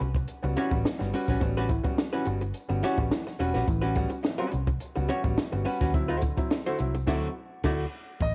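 A funky, strutting funk groove in A mixolydian at 106 BPM, cut from a longer piece and recorded at home on cassette with light reverb and studio ambience. An up-front, hollow-body archtop guitar plays clean, compressed, picked accompaniment over a round, foam-muted electric bass, while a brilliant, woody upright piano adds stabs and a compact cocktail kit with a high-tuned snare and punchy kick sits dark and rolled-off, a grainy tube shaker distant in the background. The chords move from A13 to D9 at 5.9 seconds, and the band hits an accent from 7.1 to 8.2 seconds.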